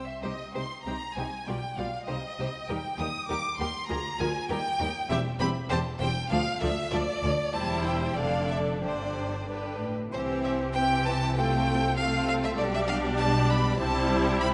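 In a rubato 2/4 at 98 BPM, this quick, lively classical-period movement for string orchestra opens in C minor and turns cheerfully to C major at 5.1 s. An expressive, up-front violin section carries the melody over a smooth second violin line, while violas add a warm bowed accompaniment from 0.2 s and a cello section sits in the background above a dark, soft-attacked double bass section, all played with vibrato. The strings sound in a reverberant concert hall with a gently rolled-off top, and the passage is cut from a longer piece.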